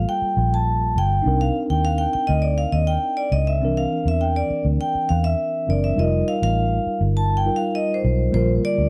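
Dark, lightly reverberant production frames this silky, smooth excerpt of lush 1970s-style soul at 102 BPM in 4/4, tuned to A4 = 439 Hz, where a close-miked, dry, ringing vibraphone with medium hard mallets and its motor off plays the melody up front as a solo from 0.0 to 8.3 seconds, a mellow tine electric piano heard through its built-in speakers supplies clean accompaniment, and a round, foam-muted, amped fingered electric bass sits forward beneath the chords Gm9, Cm9, C9 and F9sus4 before settling on Bb6.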